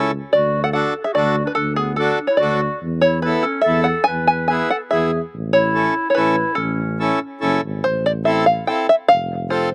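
A bouncy, straight three-beat lilt drives this jolly alpine folk fragment, where a twangy, plunky fingerpicked open-back banjo carries the tune up front over a reedy, hollow accordion and a mellow tuba bass, while a soft-attacked, distant clarinet with slapback echo adds a clear second line until 7.4 seconds, in a dry outdoor recording.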